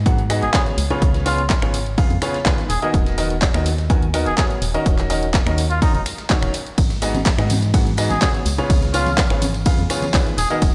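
An organ-like FM bass opens this feel-good, euphoric piano house excerpt at 125 BPM in Db mixolydian, its hollow, dark tone pumping against an up-front, punchy electronic kick, a tape-tinged analog drum machine with finger snaps, handclaps, hi-hat and ride, and a very quiet, gritty sampler-style kit of hi-hat and snare. A clear, slightly worn baby grand piano riff, also pumping and touched with digital delay, moves through Abm7, Db7, Cbmaj7/Eb and Ebm7 while a cup-muted trumpet carries a soft, veiled, jazz-style solo melody with vibrato and its own delay. From 6.8 seconds, saturated tambourine and congas join softly in the background, all set in light reverb and a large, roomy ambience.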